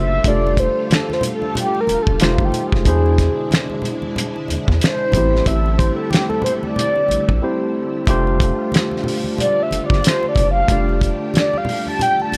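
A mellow, horn-like synth lead carries the melody up front, its round, soft-attack tone thickened with chorus and vibrato and set in plate reverb, playing a soft solo across the whole passage with a brief break from 7.4 to 8.1 seconds. This is a soulful neo-soul R&B groove at 92 BPM in 4/4, with a swung sixteenth-note feel in F major, tuned slightly flat to A4 = 436 Hz. A bright, barky tine electric piano plays accompaniment through a combo amp, while a vintage string machine of violins holds shimmering sustained chords beneath, bathed in ensemble chorus. A rubbery, hollow square-wave bass bounces through the low end with a resonant filter pluck. From 0.2 seconds a cloth-damped, thuddy acoustic kit with a fat snare, tight kick, hi-hat and finger snaps sits up front with a rolled-off top, joined by low-tuned congas played with soft hands. The chords move from F69 through F9, E7b13 and Am7 before returning to F69, and the whole clip is cut from a longer piece with a light touch of reverb.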